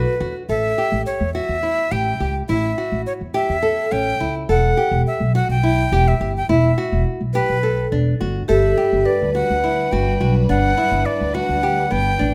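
Hypnotic and pensive, this contemporary chamber piece moves in a straight 7/8 at 210 BPM (eighths), cut from a longer work and tuned to A4 = 438 Hz. A breathy, bright jazz flute with a crisp, chiffy attack carries the melody up front over fingerpicked nylon-string guitar arpeggios and a woody pizzicato upright bass, as the chords pass from A7 to Em to Gmaj7. A ringing vibraphone with medium hard mallets, motor off, sounds a brief note at the start and returns at 8.5 seconds with a second line, joined then by a bowed string section with vibrato sitting in the background, all set in light reverb with close, detailed miking.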